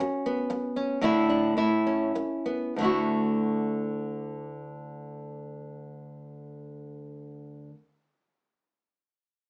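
This gentle, hopeful folk passage in D major and 3/4 time moves between 93 and 122 BPM, slowing over its first 2.8 seconds. A lone fingerpicked nylon-string guitar carries the accompaniment from 0.0 to 7.8 s, full-bodied and deep in a classical vein, with finger squeak audible as it moves through Bsus2, Asus4 and Aadd9 before settling on Dadd9 at 2.8 s. A wet studio reverb and a small-speaker character place the listener further back in the room, with the guitar tuned slightly low to A4 = 439 Hz.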